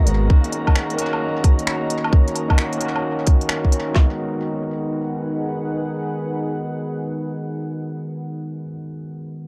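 An echo-heavy, lightly reverberant mix carries this ghostly, melancholic future garage fragment in G# minor at 131 BPM with a swung 16th feel: a barky, gritty overdriven tine electric piano sits up front with lo-fi sampler crunch, low-pass filtering, analog delay and sidechain pumping, while a deep, detuned ambient pad drifts beneath through chorus, reverb and the same pumping. A breathy, wind-like noise texture hovers faintly until 4.0 seconds, and organic electronic drums pair a tight kick, woody snare and handclaps up front with crisp hi-hats, finger snaps and a tape-echoed woodblock, as the harmony moves from D#m7 to G#m7 at 4.0 seconds.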